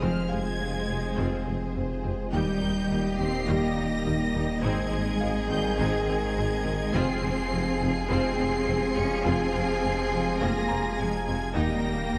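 Relentless and futuristic, this cinematic cue blends orchestra and electronics in F minor at 104 BPM in a straight 4/4, and it is cut from a longer piece. Violins carry a high melody from F6 to Db7 over a lush second violin line, bowed with vibrato and a smooth top, while violas add rich accompaniment in the background. French horns, a vintage-toned trombone section and a very quiet ethereal, airy pad hold sustained chords. Below them, cellos, distant double basses and a mellow tuba share the bass with a menacing, saturated detuned saw bass that rises through a filter swell. A dark, very quiet grand piano adds texture throughout the 12.2 seconds. The chords move from Fm to Eb, Ab and back to Fm, all set in the lingering reverb of a scoring stage for a dark production.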